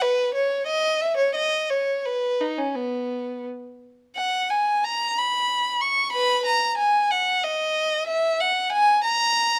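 A single bowed violin carries this flowing, serene classical passage, a baroque-style suite movement in B major and 3/4, moving freely at around 83-94 BPM with an unhurried rubato. The playing is expressive, with vibrato, gliding portamento and a smooth, warm top, ranging from B3 up to C#6, and the music turns to a new section at 4.2 s. Close, detailed microphones keep the violin up front while a moderate stone-room reverb adds gentle space around this short cut from a longer piece.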